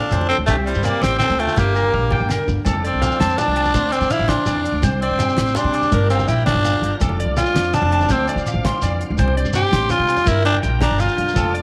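This joyful, danceable highlife excerpt in F major moves at 110 BPM in 12/8. It opens with a raspy, breathy tenor saxophone up front with tape echo, a mellow trumpet line in the background that stops at 2.3 seconds, a fingerpicked parlour acoustic guitar with audible finger squeak, and a twangy, slightly broken-up electric guitar playing arpeggios. Almost at once a woody pizzicato upright bass and a dry 70s drum kit with fat snare and tight kick join in, alongside ringing, saturated agogo bells, very quiet hard-hand congas and a grainy, vintage shekere, and a drum fill leads at 2.7 seconds into a tenor saxophone solo over chords such as Gm7 and F6, where a smooth tonewheel organ with slow rotary speaker enters very quietly with sustained chords, all set in moderate plate reverb and small room ambience.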